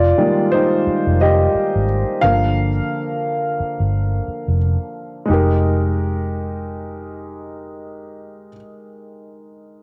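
An intimate concert grand piano opens this soulful, smooth R&B passage, cut from a longer piece, at 88 BPM in F dorian with a swung 16th-note feel. It carries the spotlight through the first 5.3 seconds over Fm11 and Gm7 chords, its deep bass and audible action noise sitting up front, and it continues until 9.8 seconds. A vintage foam-muted fingered electric bass, dark, round and punchy, holds the low end until 8.5 seconds, all set in a small room with light reverb and the homespun character of a cassette recording.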